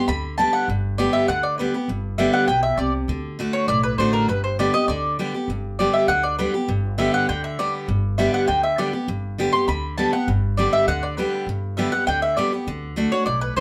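A moderate studio reverb gives this short cut from a longer bluegrass piece a natural room sound, with the mandolin and acoustic guitar both set up front. The round, double-strung mandolin carries a rustic, joyful melody over the bright, full-bodied picking of a dreadnought guitar, while a woody pizzicato upright bass joins at 0.1 s to anchor the low end. The harmony rests mostly on G with a brief move to D, and the opening phrase comes around again before the music reaches D at 12.7 s.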